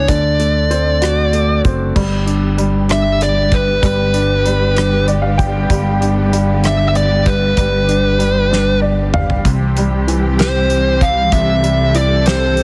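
A dark, fuzz-distorted lead guitar carries the melody over clear, woody upright piano and a round, punchy fingered bass, with a damped 70s drum kit of fat snare and tight kick entering just after, in a melancholic, dramatic six-eight pop ballad at 64 BPM that moves from D7 to G to C. At 2.0 seconds a studio string section joins with expressive, bowed sustained chords full of vibrato and portamento, and the piano adds fills while the drums and piano both fill at 8.5 seconds. The fragment, cut from a longer piece, sits in light studio reverb with a heavily compressed radio sound.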